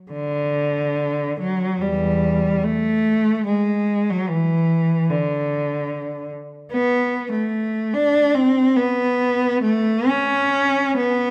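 A moderate recital hall reverb, about 1.5 seconds long, surrounds a single up-front cello in this lonely, meditative fragment of a longer classical piece. The bowed cello plays alone throughout, its tone rich and focused with vibrato, ranging from E2 to D4. Around 72 BPM in 4/4, the free, expressive line moves with uneven beats and rubato.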